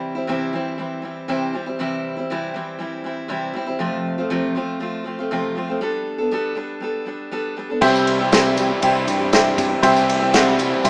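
A full-bodied, picked steel-string acoustic guitar opens this hopeful, open-road slice of folk and heartland rock at 119 BPM, sitting up front with audible finger squeak as it moves through C, F and Gadd9. At 7.8 s the band arrives together: a brilliant, short-sustained baby grand piano, a crunchy double-tracked overdriven guitar riff tucked in the background, a warm fingered electric bass, an unplugged drum kit played with bundle sticks (punchy kick, dark cymbals) and a very quiet, jingly tambourine. A lush hall reverb wraps the rough home-demo mix, which has a small-speaker sound.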